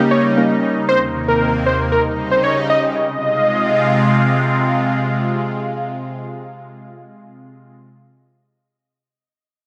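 A thick, bold unison lead carries a mellow melody with vibrato from 0.1 s to 4.5 s, its detuned sawtooth tone bathed in tape echo. Underneath, a lush, bright unison pad sits up front, holding sustained chords from the start until 7.7 s with chorus and phaser giving it a shimmering, detuned thickness. A deep, dark chord stab with a fast attack, a soft, decaying body and ring-modulated colour opens the passage, lasting only until 0.8 s through chorus and tape echo. This carefree, euphoric pop fragment in straight 4/4 moves from Eb7 and Cm7/Eb harmony during an opening drop to an Ab6 chord at 3.0 s. A wet spring reverb and echo-heavy mix surround this short cut from a longer piece.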